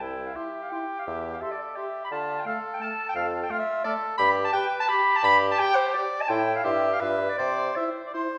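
This quick, cheerful classical-period movement for wind quintet is a spirited fragment cut from a longer piece, moving in a lilting triple metre with a flexible, rubato feel. The clarinet sits up front in a roomy, mellow accompaniment, while the oboe carries a clear second line with light vibrato and the bassoon anchors the bass with a clear tone and light vibrato. At 0.4 s the silver concert flute joins with the melody, pure and metallic with vibrato and tongued notes, though it sounds distant and very quiet. The French horn also enters then with soft-attacked accompaniment, the warm glow of its tone filling the middle of the texture. The harmony moves through a bright classical progression to a dominant seventh and a closing return home, with the bassoon dropping out at 7.7 s, all set in a wet recital hall reverb.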